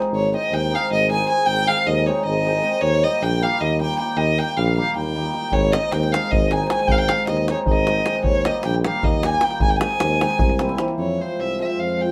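A shimmering, ringing cimbalom and a brief touch of deep, close davul open this bittersweet, virtuosic Balkan wedding-band fragment in 7/8 at 310 BPM (eighths) in Ab major, joined at 0.1 s by an up-front, dark, woody bowed violin melody with vibrato and a smooth-topped, mellow tuba bass with light vibrato, while the davul returns from 5.5 s to 10.9 s in a moderate studio reverb as the chords move through Ab, Eb and C7 to Fm.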